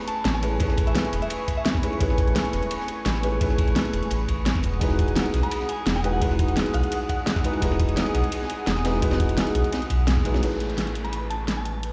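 Heard through a big sound system in a bare room, with a large studio reverb and light ambience, this lush, dreamy slice of liquid drum and bass moves at 171 BPM in A lydian, its chords shifting from Amaj9 to Emaj9 and back. A felt-muted upright piano carries the accompaniment throughout, soft and intimate with audible action noise and a dub echo, while a detuned sawtooth analog pad holds sustained chords with chorus and a moving notch. A glassy, crystalline FM synth bell drifts in with brief melodic phrases, warbling through chorus, tremolo and dub echo. The drums layer a gritty, thumpy sampler-style electronic kick, a produced electronic pop kit with a fat snare and warm hats, and a dark, rolled-off acoustic breakbeat kit with a high-tuned snare and high-pass filtering on its cymbals, snare and room. A deep, up-front sub bass with an octave anchors the low end, and after a band accent at 10.1 seconds the breakbeat kit drops away as an electronic downlifter sweeps in at 10.4 seconds.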